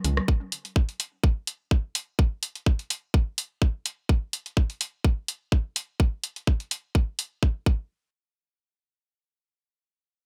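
The recording is dry and close, with both drum parts placed up front and carrying the layered, produced sheen of electronic sounds re-recorded in a small room. This is a sparse, quirky minimal techno fragment in 4/4 at 126 BPM, cut from a longer piece, with a light swing of 54% on the 16ths. A garage drum kit supplies warm hi-hats and a rim click from the very start. A tight electronic kick drum joins at 0.3 s and sits noticeably louder than the kit. The kit drops out at 7.3 s, leaving the kick alone until it stops at 7.8 s, just before a second section begins at 7.9 s.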